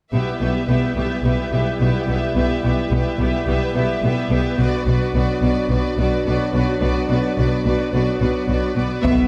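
Cinematic, epic orchestral film score in B minor at 108 BPM in a straight 4/4, dramatic and heroic in mood, cut from a longer piece. From the opening, a lush string body holds the ground: double basses, clear and focused on a low B, sit with a rich cello section in the background, while violas with vibrato and portamento carry the accompaniment and violins play an expressive second line with a soft attack. A mellow French horn section sustains chords from a distant, roomy position, giving the harmony a classical glow as it moves from Em/B to Bm at 4.6 seconds. At 9.0 seconds a band accent arrives: a taiko ensemble strikes with hard sticks in a live room, a huge, dark impact sounds very quietly beneath it, and a focused violin melody touches E5. A moderate scoring stage reverb of 1.6 seconds gives the ensemble a sense of space.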